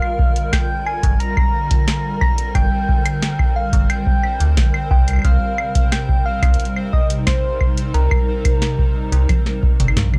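A metallic FM bass stands out from about 1.0 s, its digital, fast-attack notes decaying low beneath this intricate, cerebral IDM excerpt in straight 4/4. Up front, an electronic kick drum lands with a deep, tape-warm thud alongside a booming analog drum machine whose tonal snare, metallic hats, claves and toms carry through to a drum fill from 9.3 s. A soft struck synth lead plays a round, gentle, keys-like melody with chorus, cassette tape character and tape echo, while a hollow, flute-like pad holds warbling, detuned chords under ensemble chorus as the harmony moves from Gm7 to Cm7 at 5.2 s. In the background, a bright, tempo-synced gated texture pulses with chorus and its own reverb. The whole is set in a digital ambience with a dry, gritty hardware sound, cut from a longer piece.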